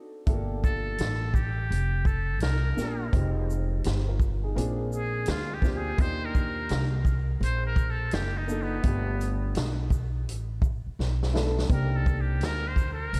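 Jazz-hop with a smoky, nocturnal mood, this short excerpt moves at 84 BPM in G minor with a swung 16th-note feel, as a muted trumpet carries a buzzy, breathy, intimate solo touched with analog delay, entering at 0.6 seconds. Beneath it, a dark upright piano adds mellow accompaniment through a lush chorus, while a woody, thumpy pizzicato upright bass and a punchy vintage drum kit of kick, snare, hi-hat and shaker sit up front. The chords move from Gm9 through Fm9, Bb7, Ebmaj9 and G7 to Cm7, with a drum fill at 11.0 seconds in a light, studio-room ambience.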